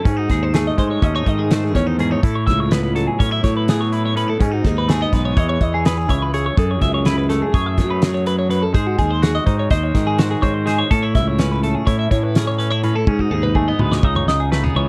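In a restless 9/8 at 249 BPM counted in eighths, this intricate math rock and midwest emo excerpt sets a clean, twangy electric guitar against phaser-tinted twelve-string arpeggios, while a growly, overdriven fuzz bass and a loose, up-front indie kit with a fat snare and tight kick drive through shifting chords like F#m11 and G#7 before a drum fill at 13.1 seconds, all captured in a dry, close 1970s-style studio sound.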